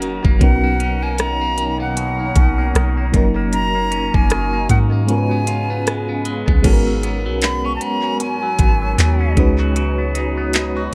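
Smooth and dreamy, this contemporary R&B excerpt at 77 BPM swings in 4/4, with a knocking trap kit of crisp hats, handclaps and rim clicks sitting up front beside a deep, round 808-style bass, while a mellow FM electric piano with tremolo, bright and twangy clean electric guitar arpeggios through phaser and tape echo, and a detuned, warbling ethereal pad in the background support an airy silver concert flute melody with vibrato and tape echo that ends at 9.3 seconds, as the harmony moves from Bmaj9 to G#m11 at 6.6 seconds in a dry, echo-heavy mix.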